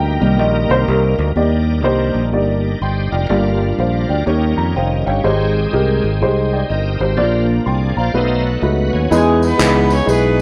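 A swung 4/4 at 124 BPM drives this uplifting, jubilant uptempo gospel excerpt in Eb major, where a woody, slightly detuned upright piano and a growly, up-front fingered electric bass play throughout, a shouting, lightly overdriven tonewheel organ with slow rotary speaker and chorus vibrato holds sustained chords and takes a fill at 7.7 s, and at 9.1 s a mellow, distant horn section in octave doubling carries the melody over egg shaker and group handclaps in a large room, the whole recording set in light reverb and the warbly pitch drift of a worn cassette tape.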